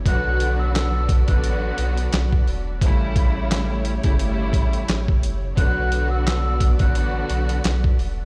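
A stone-room echo from a big sound system surrounds this dark, reflective boom-bap hip-hop excerpt in B minor at 87 BPM, where a gritty, pitched-down sampler kit with thumpy kick, handclaps and hi-hat sits up front beside a round dub sub bass, while a lush, distant bowed string section with cassette-tape colour carries the accompaniment, a sul tasto string ensemble holds soft chords in the background, and a breathy, hollow jazz flute with tape echo floats a high melody over Bm and A7.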